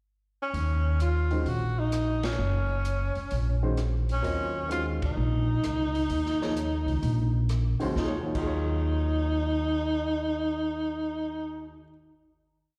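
A mellow tenor saxophone with subtone, vibrato and scooped notes opens this hypnotic, spiritual modal jazz piece in Eb dorian at a swung 129 BPM, its motif-based phrases carrying slapback echo over a woody pizzicato upright bass in a two-feel, a small-room drum kit with dark cymbals keeping time on the hi-hat, and a polished baby grand piano comping in quartal voicings, with band accents at 2.2 and 4.9 seconds before the drums stop at 8.4 seconds and the group holds a final Ebm11, the performance heard as a live gig through the venue's PA in a recital hall.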